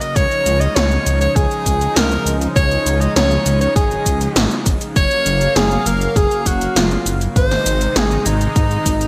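A close-miked tenor saxophone leads this moody, nostalgic synthwave piece, playing a jazz-style solo melody between Eb4 and Eb5 with light vibrato, scooped notes and a soft attack, carried by a delay. The music moves at 100 BPM in a straight 4/4, tuned to A4 = 439 Hz, and the chords run from Dbadd9 to Gbmaj7 at 5.0 seconds and Ab at 7.4 seconds. Beneath the horn, a very quiet FM electric piano with a soft pad layer traces a second line in the same range, lush and dreamy with chorus and tremolo, while a smooth analog pad holds sustained chords with chorus and sidechain pumping. Vintage 80s electronic drums sit up front with a gated snare drum, metallic hi-hat and cabasa under gated reverb, joined at 0.2 seconds by a punchy, layered electronic kick drum. A deep, rumbling detuned saw bass also enters at 0.2 seconds, beating and dark, with sidechain pumping. The bright 1980s-style digital production adds light reverb to this brief cut from a longer piece.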